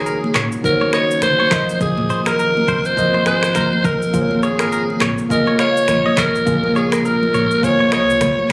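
Captured on a phone in a club-like room with light reverb and compression, this short afrobeats excerpt in Bb minor moves at a sultry, smooth 103 BPM with a swung sixteenth-note feel over Ebm7, F7sus4 and Bbm7. Up front, a breathy, raspy alto saxophone carries the pop-style melody with vibrato, while a worn, slightly out-of-tune tine electric piano plays accompaniment and a bright, twangy direct-recorded clean guitar picks a riff through subtle chorus and delay. Underneath sit an ethereal, detuned pad with ensemble chorus and its own reverb, a punchy sine sub bass with a pitch-drop attack, an electronic afro-pop kit with a deep kick, snaps, handclaps, rim clicks, shaker and toms, and damped, high-tuned congas in the background.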